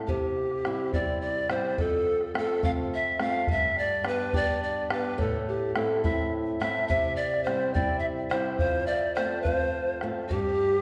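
A straight-feel 6/8 pulse carries this short, earthy and melancholic Andean folk fragment, cut from a longer piece. A fingerpicked flamenco guitar with fresh strings sits up front from the start, moving through C, F, G and A minor, while a round bombo adds acoustic weight with a small-room character. The melody belongs to a breathy, reedy bamboo pan flute, also up front, its soft attack carrying a touch of chiff and a gentle vibrato, with tape echo trailing behind it. At 5.8 s a mellow large quena joins as a second line, its wooden, end-blown tone pure and tongued with a straight sound, placed distant in the background. The whole ensemble is heard from further back in a wet scoring-stage reverb, giving the performance a spacious, reflective air.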